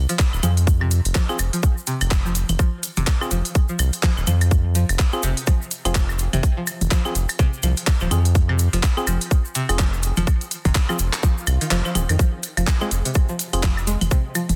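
Minimal techno with a clinical, sparse mood, cut from a longer piece and riding a swung groove over a single F minor chord. An overdriven, tight electronic kick sits up front beside a round, deep analog bass that pumps with sidechain, while a garage kit of handclaps and crisp hats carries soft clipping on its snare, a grainy egg shaker stays in the background, and electronic woodblock, claves and toms fill out the percussion. A twangy, string-like resonator pluck with a moving notch and a hollow, organ-like stab both trail dub echo and chorus, the stab also tape-coloured, and near 11.4 seconds a faint electronic swell enters in the background as the kick drops out from 11.7 to 12.2 seconds in a dense, heavily limited digital ambience.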